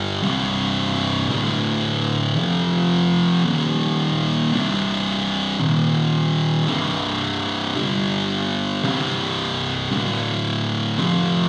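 Hypnotic and sludgy, this slow metal piece in C minor crawls along at 56 BPM with a swung feel, cut from a longer performance. A thick fuzz guitar plays alone throughout its 11.5 seconds, its picked, double-tracked tone sitting up front in the low register with heavy distortion and tape echo, moving through power chords on C, D, F, E-flat and G. The sound is that of a live gig heard through the venue's PA, with recital hall reverb and a dark, muffled top end.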